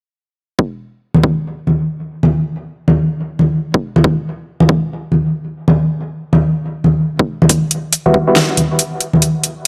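Soft-handed congas stand out in this brief fragment of deep dubstep, their vintage, band-limited tone sitting up front from 1.1 seconds under a dark, meditative mood. A punchy, overdriven electronic kick, filtered and layered, carries the half-time, swung groove alongside them, having entered at 0.6 seconds. Near the close, at 7.5 seconds, an overdriven deep house kit arrives with a fat snare and metallic hi-hats. A hollow, nasal organ stab flashes briefly at 8.1 seconds, its fast attack decaying into lush chorus and dub echo over a lone E minor add9 harmony. The sound is dry and gritty, set in a moderate digital echo-chamber ambience.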